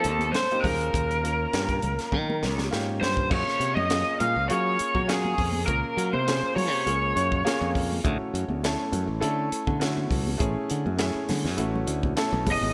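Up front, a growly, bright fingered electric bass drives this slick, bright jazz fusion excerpt with a gentle swing, ranging from Gb1 to Gb3 across the full 12.7 seconds. A dark, overdriven lead guitar from a small cranked amp carries the melody through chorus and delay, joined an octave-region above by an airy, expressive metal flute with soft-attack vibrato playing a second line; both play until 7.7 seconds and return only briefly at 12.5 seconds. An intimate, boxy grand piano with audible action noise comps through suspended ninth chords that give way to major ninth colors, while a crisp kit with a punchy kick, high-tuned snare and pumping room sound plays a fill from 2.1 to 3.3 seconds. Damped, high-tuned congas played with soft hands sit in the background. A lush hall reverb and bright 1980s-style digital production frame the whole, and the clip is cut from a longer piece.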